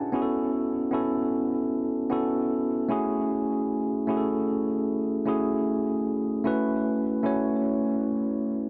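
Romantic and dreamy, this short R&B fragment is cut from a longer piece and rests entirely on a solo tine electric piano. The piano sits up front with a clean, warm tone heard through its built-in speakers, and a tape echo trails its notes. Its range spans A3 to A5 across the full 8.7 seconds. The harmony moves from A6/9 to F#m9 at 2.9 seconds and settles back on A6/9 at 6.4 seconds. A light reverb gives the recording a soft sense of space.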